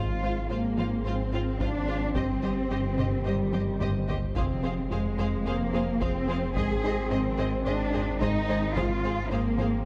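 Brooding and tense, this cinematic film cue from a longer piece blends orchestra and electronics at 109 BPM in a straight 4/4, moving through F minor, C minor and A-flat chords. An up-front, expressive cello section carries the bass line, joined by a rich chamber double bass section and a pure, deep sine sub bass, while a smooth synth bass riff with a ring-modulated edge sits in the background. Above, a distant, lush violin section holds the melody between Eb5 and F5, supported by a second violin line on C5 and an intense viola accompaniment. Sustained chords come from a dark French horn section, a very quiet, roomy trombone section and a glassy, ethereal FM pad coloured by chorus and phaser. A very quiet unison pluck adds punchy, detuned sawtooth arpeggios, and a taiko ensemble enters at 1.6 seconds, with a drum fill from 3.5 to 4.4 seconds. The production is dark and warm, set in a moderate scoring-stage reverb.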